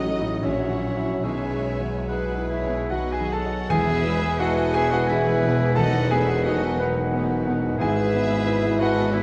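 An up-front concert grand piano carries the melody with a clear, open tone and deep bass in this passionate, lush excerpt of a romantic piano-and-orchestra movement in E major, moving in a rubato 3/4 at 70-92 BPM. Distant, vibrato-rich violin sections share the tune and add a second line, joined by a roomy oboe, a close-miked clarinet and a pure, crisp flute section, while a mellow bassoon and focused violas fill the accompaniment. Dark French horns hold soft chords over smooth cellos and focused double basses, and at 3.7 s a tight trombone section and a present tuba enter beneath it all, everything set in a moderate scoring-stage reverb with a dark production.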